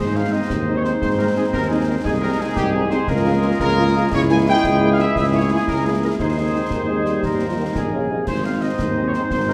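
An up-front tuba anchors this spirited, festive military-style march for wind band, its soft-attacked, smooth-topped bass giving the ensemble a solid floor. Cut from a longer piece, the passage moves in a straight 6/8 at 116 BPM in Ab major, with a punchy, tight trumpet section carrying the melody from a distance. A soft-edged woodwind section adds a second line, while a dark trombone section holds sustained chords and a very quiet French horn section fills in the accompaniment, all with light classical vibrato. Concert snare drum, concert bass drum and clash cymbals keep the march going, the cymbals sounding bright in a live room. A vintage-toned euphonium briefly adds its own second line between 6.7 and 8.3 seconds. The harmony settles back on Ab at the close, and a wet concert hall reverb gives the band a roomy setting.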